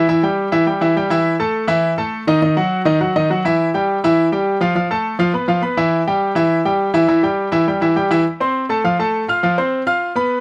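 Close, detailed miking and a light reverb give this short Latin excerpt an intimate, polished sound, with the grand piano's action noise audible up front. A lone clear grand piano carries the whole joyful, festive passage in straight 4/4, ranging from Eb3 to F6 with long sustain, moving through chords such as Em, Ebm and F before shifting into a new section at 8.3 seconds that settles on F harmony.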